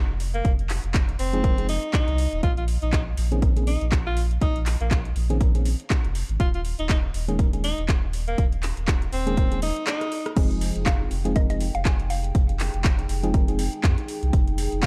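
A steady 4/4 groove at 121 BPM swings its sixteenths in this deep, late-night deep house cut in F minor, taken from a longer piece. An up-front, overdriven electronic kick anchors the beat alongside a layered drum kit of crash, handclaps, rim clicks and metallic hats, while a round sine-and-triangle sub bass with an added octave pumps against the sidechain. A clear alto saxophone carries the melody with light vibrato and dub echo, and a soft FM electric piano plays chorused, pumping stabs through the Fm7, Bbm11 and Eb7sus4 changes. After a brief break and drum fill, the saxophone drops out as the track drops at 10.4 seconds. A moody, detuned analog pad with a slow attack joins at 10.8 seconds, followed at 10.9 seconds by a woody, mallet-like synth pluck treated with chorus, phaser and digital delay. The dark production keeps the sound dry, with little reverb.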